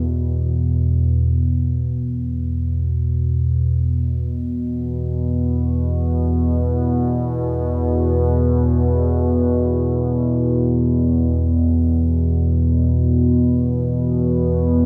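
Dark and cavernous, this free-time ambient excerpt, tuned to A4 = 437 Hz, features a solo analog drone holding an E5 chord between E2 and B2 from 0.0 to 14.9 seconds. The drone is a warbling, detuned blend of sawtooth and pulse-width-modulated pulse wave with slow attack and long release, placed up front with chorus and tape echo, in a dreamy mix soaked in a lush hall reverb with a 2.5-second decay.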